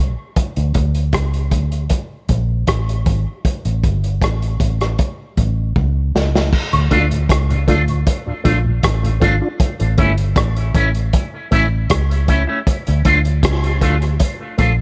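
A foam-muted, round electric bass sits up front from the very start of this dub reggae excerpt, moving through a dark low register at a meditative 78 BPM in straight 4/4, in D harmonic minor. A muffled, lo-fi vintage drum kit with a tight kick, medium-tuned snare, rim clicks, hi-hat and crash joins at 0.4 seconds, its rolled-off top sitting close in a small, echo-heavy room, and a drum fill closes the opening break. At 6.7 seconds a flute-like tonewheel organ drifts in the background with chorus vibrato, slow rotary speaker and dub echo, alongside a brief echoing woodblock hit. From 6.9 seconds a bright, twangy electric guitar through an envelope filter takes a scooped, picked accompaniment role up front, bathed in lush chorus and dub echo. The harmony settles between D minor and A, giving the piece a deep, meditative feel.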